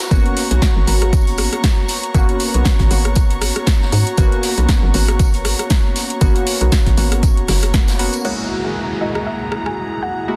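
A dense, heavily limited mix with light small-room ambience carries this moody, deep house excerpt at 118 BPM in G# minor with a swung 16th feel: an overdriven electronic kick sits up front under a hollow, bouncy FM bass, punchy overdriven house drums with metallic hats, and a distant, roomy acoustic kit in the background, while chorused analog keys stab over sidechain-pumped, airy, breathy pad chords carrying vintage 12-bit sampler grit and a faint, clear bowed violin section; after the kick stops at 7.9 s, a soft, round pluck melody with delay and an electronic downlifter enter at 8.2 s as the harmony moves from G#m11 to F#9.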